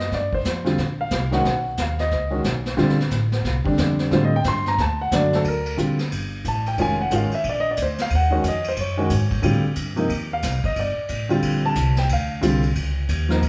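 Playful and sophisticated, this jazz piano trio excerpt swings briskly at 180 BPM in 4/4, with an intimate, up-front grand piano carrying the melody and soloing throughout, its action noise faintly audible as chords move from Gm7 through Bbmaj9 and Ebm7 to a closing Dbsus2. Beneath it, a woody pizzicato upright bass on steel strings holds the low end, while a distant, roomy brush kit with a punchy kick, medium-tuned snare, hi-hat and ride adds a rolled-off shimmer. A moderate recital hall reverb of 1.4 seconds gives the trio the natural air of a church or concert hall.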